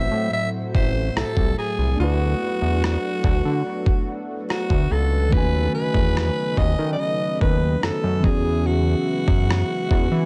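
An echo-heavy mix with digital ambience frames this dreamy, tender contemporary R&B excerpt in E major at 72 BPM, moving through Am6, D6, B13/D# and E69. A raspy, close-miked alto saxophone carries the melody up front with light vibrato and dub echo, over a mellow tine electric piano that also has dub echo and a lush, warbling unison pad with chorus, both set in the background. A fat, sawtooth analog bass with a filter pluck sits up front, joined at 0.7 seconds by a dusty, sampler-style drum kit of thumpy kick and rim click, overdriven with vintage 12-bit grit.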